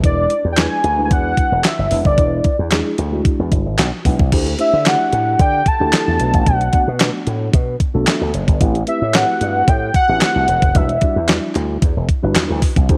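Danceable and funky, this early-eighties boogie funk excerpt moves at 112 BPM in a straight 4/4, cut from a longer piece. An overdriven 8-bit digital drum machine sits up front with a thumpy kick, a medium-tuned snare, hi-hat, handclaps and crash cymbal, while a punchy slap bass run through an envelope filter drives the low end with a bright, amped tone. A mellow tine electric piano supplies clean accompaniment through its built-in speakers and breaks into a short fill from 7.8 to 8.6 seconds. Above it all, a velvety synth lead with sawtooth, triangle and sine layers, a sub octave, chorus and vibrato carries the melody with a fast attack and sustained notes, entering at 0.1 seconds and stopping at 11.3. A barely audible live-room group handclap adds a human touch beneath the machine, and the harmony moves from E7 through D9sus4, Bm7 and Am9 to Em9 under light reverb.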